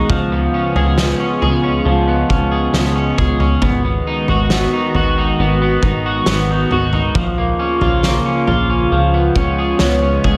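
A moderate plate reverb bathes this dreamy, ethereal dream pop excerpt at 68 BPM, where a hollow, airy pad holds sustained chords with chorus, an up-front, twangy electric guitar on the edge of break-up picks arpeggios through lush chorus and delay, a plucky, punchy analog bass anchors the low end, and a distant, roomy indie drum kit with a fat snare and punchy kick enters at 0.1 s, over chords moving from C#7 through G#m7 and A#m back to C#7, before a felt-muted upright piano with audible action noise and delay slips in a brief melody on C#5 at 9.8 s.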